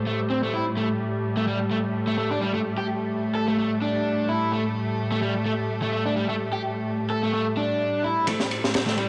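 A dry, gritty hardware sound with cassette-tape character and a touch of small-room reverb frames this energetic breakbeat cut, taken from a longer piece, at 128 BPM in 4/4 with a 56% swing on the sixteenths, in A minor tuned to A4 = 439 Hz. A chamber string ensemble holds sustained chords from the outset, bowed sul tasto with light vibrato and a soft attack, sitting intimate and close under 12-bit sampler grit, sidechain pumping and a low-pass filter, while a filter sweep moves across the strings until 8.3 s. From 0.1 s a raw garage electric guitar plays a picked, overdriven riff, thickened by tube saturation, the same sampler grit, low-pass filtering and analog delay, and it stands up front beside the strings. The harmony rests on an A7 voicing that omits the third before shifting to Am7 at 8.3 s. At that same moment a crunchy acoustic drum kit arrives with a punchy kick, a high-tuned snare and dark ride cymbal, its saturated, rolled-off studio-room tone warm and high-pass filtered throughout.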